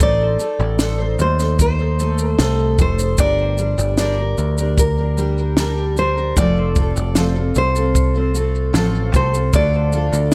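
A straight 4/4 pulse at 76 BPM carries this reflective, tender acoustic pop passage in G minor, cut from a longer piece. A compact cocktail drum kit sits up front with a punchy kick, a dry, high-tuned snare and shaker. Beside it, a picked electric bass adds a direct, up-front low end. A fingerpicked dreadnought steel-string guitar, full-bodied and double-tracked, supplies the accompaniment as the harmony moves from Adim to Gm, F and then Dm. Over this, a deep classical nylon-string guitar with fresh strings carries the fingerpicked melody in a narrow upper register, its warm tone trailed by tape echo. The small room ambience and echo-heavy mix give the 10.3-second passage an intimate, spacious glow.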